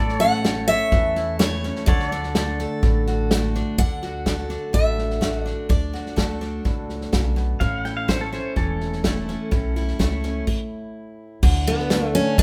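A moderate studio reverb surrounds this short honky-tonk and classic country piece, with the drums carrying a natural, small-room sound, and the drums and the accompanying acoustic guitar placed up front. The mood is nostalgic and heartfelt in a straight 4/4, with a picked dreadnought acoustic carrying the melody in a bright, full-bodied voice while a second picked acoustic with fresh strings fills in the accompaniment. A pizzicato upright bass with steel strings sounds woody and thumpy beneath a natural country drum kit of punchy kick, medium-tuned snare, hi-hat and crash cymbal. A clean, compressed pedal steel played with fingerpicks adds twangy sustained chords with volume swells and slide until 3.8 s, then returns at 7.6 s with a second line. A stop arrives at 10.5 s before the lead guitar's melody comes back to close the passage.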